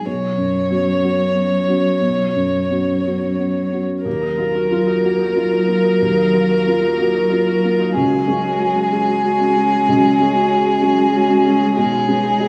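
Reflective and melancholic, this rubato neoclassical piece in 6/8 at 62 BPM in Eb minor sets an up-front violin melody with vibrato over a felt-muted upright piano with audible action noise and an intimate sul tasto cello, with a distant woody viola and very quiet thumb-plucked Celtic harp arpeggios joining near 4.0 seconds and an ethereal detuned pad with phaser arriving at 6.2 seconds, all within a wet stone room reverb in a short cut from a longer work.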